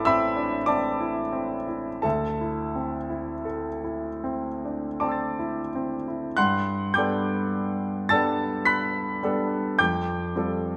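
A clear concert grand piano carries this short classical excerpt alone, a hazy, luminous impressionist miniature in G major, cut from a longer piece. Its slow 3/4 pulse drifts between 36 and 55 BPM with a free, rubato feel, and the piano spans from A1 up to B6, with deep bass and a polished, present tone. The sound is intimate and up front, with long sustain and audible action noise from the instrument, all set in a wet recital hall reverb. The harmony floats through Amadd9 and D9sus4 in the opening passage, then shifts to Gadd9 at 6.4 seconds and Fadd9 at 9.8 seconds before the fragment ends at 10.8 seconds.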